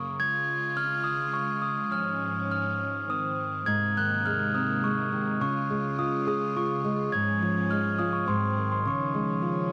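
Set in 3/4 at 104 BPM and played with a loose, rubato feel, this short lullaby in Db major is cut from a longer piece and carries a gentle, innocent mood suited to children's music. A glockenspiel struck with rubber mallets carries the melody from the start, its bell-like tone mellow and soft as it rings up front in a high register. Beneath it, a bright chamber string section holds bowed, sustained chords with an earthy, close ensemble sound. At 3.7 seconds a small, dark nylon-string guitar joins in the foreground, fingerpicking an accompaniment over the harmony as it moves from Abadd9 back to Db. The progression stays simple, turning between Db and Ab before an Ab7 resolves to Dbadd9 at 8.8 seconds. The sound is dry and close in a 1970s studio style, touched only by light reverb.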